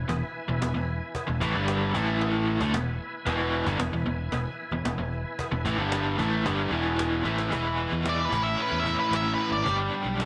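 Classic rock with a swaggering, driving feel at 113 BPM in straight 4/4, built on a biting, tremolo-tinged overdriven guitar riff up front, a cranked stack guitar riffing brightly in the background, a fingered electric bass with a direct tone, and a snappy, hard-handed cajon joined by a very quiet vintage cowbell. A reedy tonewheel organ holds sustained chords in the background through slow rotary speaker, light overdrive and chorus vibrato with audible key click, until it drops out at 7.5 s after a drum fill at 7.3 s. Then a dark octave-fuzz lead guitar steps forward with a short distorted solo line at 8.1 s, tagged with slapback echo, as the chords move from E to A and G under a moderate plate reverb.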